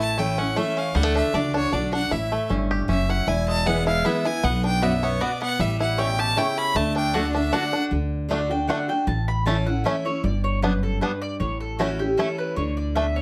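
A brisk 155 BPM pulse in 3/4 drives this rustic, virtuosic bluegrass excerpt in D major, where a clear, biting fiddle with light vibrato carries the melody until 7.8 seconds, a mellow, round mandolin enters with stabs at 3.7 seconds and takes the solo from 7.9 seconds, and underneath a bright picked dreadnought guitar, a twangy fingerpicked banjo spinning arpeggios and a woody, thumpy pizzicato upright bass played up front keep the groove going in light reverb.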